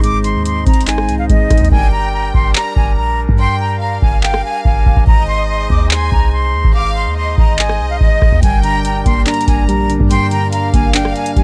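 Eerie, brooding hip hop in a trap style, cut from a longer piece and set in a half-time feel. A breathy concert flute carries the melody throughout, its straight, soft-attack tone close-miked and intimate. Beneath it, a hand-pumped harmonium holds reedy, nasal sustained chords low in the mix, while a clean 808-style bass supplies deep, boomy, decaying low end. Up front, a dry analog drum machine hits with a deep kick, handclaps, rim clicks and metallic hi-hats; the hats fall silent from 1.7 to 8.4 seconds. At 1.7 seconds a lush, bowed violin section enters with a second line, its vibrato treated with digital delay, while soft, warbling electric-piano-like synth keys with chorus drop away and return at 8.4 seconds, all inside a small room ambience.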